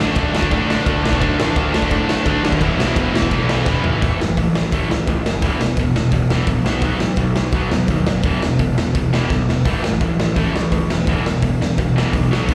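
Heard as a live club gig through the venue's PA, wrapped in club reverb, this rowdy, energetic punk rock cut moves from D to E, then settles into A, E5 and B5 after 4.0 s. An up-front, tight distorted guitar drives the riff throughout over a growly, fuzz-soaked overdriven bass, while two very quiet guitar riffs, one overdriven and one double-tracked and high-gain, sit underneath only until 4.0 s. Entering at 0.2 s, a raw garage drum kit in a pumping stone room sounds saturated and gritty, with a punchy kick, medium-tuned snare, hi-hat, ride and toms, and fills around 3.7 s and 9.3 s.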